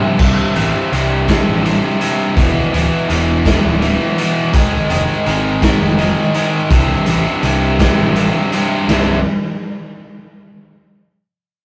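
Light reverb and a rough rehearsal-room sound frame this brief, bittersweet and anthemic slice of quiet-loud alternative rock, cut from a longer piece and moving at 55 BPM in dotted quarters in a straight 6/8 feel in C major. A drum fill at 0.0 seconds launches the raw garage kit, which sits up front with a punchy kick, a medium-tuned snare, hi-hat and crash cymbal, its acoustic tone dark and smooth with a rolled-off top in a bright stone room. Two picked electric guitars open together on the riff: a biting overdriven one, warm and forward, and a tight distorted one tucked behind it. From 0.2 seconds a fuzz picked electric bass adds a growly, overdriven low end with a direct and amped edge. The chords move through C5, E5, Ab5 and back to C5, and every part drops out near 9.2 seconds as the music shifts toward a new section.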